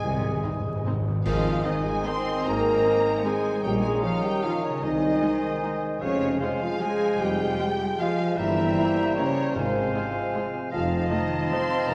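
A dark, distant French horn section holds sustained chords through this festive, sweeping orchestral ballroom waltz in 3/4, its rubato giving the beats an uneven lilt. A lush, bowed violin section sings the melody over a second violin line in the background, a very quiet viola section with portamento, and a bass of smooth cellos, expressive double basses and a very quiet, vintage-toned tuba, while a pure silver flute, cor anglais, a close-miked clarinet, a mellow bassoon and a very quiet trombone section fill the second lines and harmony. Timpani on calf heads open with a fill across the first 1.3 seconds, clash cymbals and concert bass drum strike a dry accent at 1.3 seconds, and the passage sits in a reverberant concert hall under worn, warbling tape drift and vinyl crackle.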